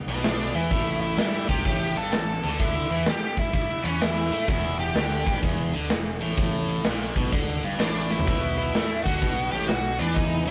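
A dark, up-front octave-fuzz lead guitar carries the melody over a swaggering, driving blues rock and southern rock groove at 127 BPM with a swung feel, backed by a bright, double-tracked overdriven rhythm guitar riff, a growly fuzz bass, and a punchy big-room drum kit with bright cymbals that drops a fill at 8.0 seconds, all moving from E7 and A7 shapes to Em7 and Bm7 in a rough rehearsal-room recording with saturated color and light reverb.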